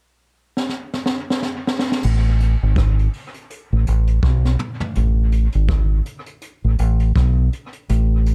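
A dark, close-sounding production with little room reverb frames this short cut from a longer roots reggae piece, laid-back yet uplifting in mood, with a gentle swing to its sixteenth notes. A jazz brush drum kit comes in at 0.6 seconds with a fill across crash cymbal, hi-hat, kick, rim click, snare and toms, its natural studio-room tone marked by dark cymbals, a high-tuned snare and a boomy kick, all touched with dub echo. At 2.0 seconds a deep, fingered electric bass enters, round and direct, sitting low between G#1 and B1 and standing out as the loudest part. Both instruments sit up front, and the drums play a second fill from 4.2 to 5.0 seconds before the final section carries the pair through to the end of the clip.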